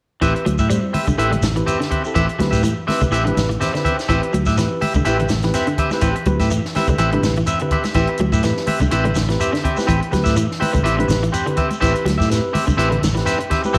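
Hypnotic and defiant, this afrobeat excerpt rides a swung 16th-note groove over a single Am9 chord. A worn, slightly out-of-tune tine electric piano with light overdrive through a combo amp plays accompaniment and adds a fill from 3.4 to 4.1 seconds, while an up-front, picked guitar with slapback echo hits bright stabs and a second clean guitar with analog chorus arpeggiates in the background. A direct, amped fingered bass anchors a dry compact cocktail kit with a high-tuned snare and punchy kick, joined by a grainy, distant shekere and damped, high-tuned congas that enter at 0.5 seconds, all set in a moderate plate reverb with small room ambience.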